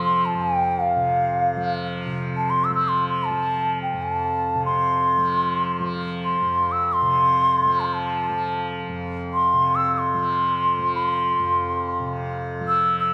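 Hindustani classical music in raga hamsadhwani, centred on F and unfolding in free time with a serene, radiant mood across this 13.1-second fragment of a longer piece. An airy, warm bamboo bansuri carries the melody with vibrato and tongued notes, while a softly plucked tanpura sustains a buzzing, shimmering drone beneath it throughout. A wet recital-hall reverb gives the sound a spacious bloom.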